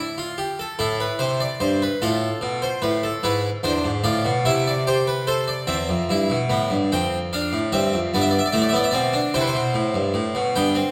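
A solo French-style harpsichord, plucked and full-bodied with two sets of strings and placed up front, opens this stately yet joyful baroque-style three-part fugue, cut from a longer piece, moving in a straight 6/8 at 49 beats per minute counted in dotted quarters. The writing spans E2 to G5, beginning in A minor and turning to a brighter C major at 5.7 seconds. A wet recital hall reverb surrounds the instrument until it stops at 10.9 seconds.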